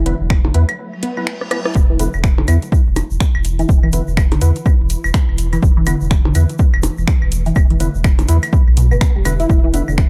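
A dark, digital ambience frames this short cut from a longer minimal techno piece, cool and sparse at 124 BPM in 4/4 with a 60% swing on the sixteenths. An overdriven, punchy electronic kick sits up front beside a deep, saturated sine sub bass that pumps under sidechain, while a layered techno kit adds finger snaps, rim clicks and metallic hi-hats, joined by delayed claves and percussion blips re-recorded in a small room. The riff comes from a juicy, squelchy sawtooth pluck with a resonant filter, moving notch, phaser, chorus and digital delay, and a hollow, organ-like stab with chorus and delay adds percussive punctuation. Far behind, a swarming, tense drone evolves slowly in granular, detuned unison with its own reverb. A break at 0.8 s brings an electronic reverse cymbal from 1.0 s and a drum fill from 1.4 s, after which a grainy, bright egg shaker slips into the background from 1.8 s.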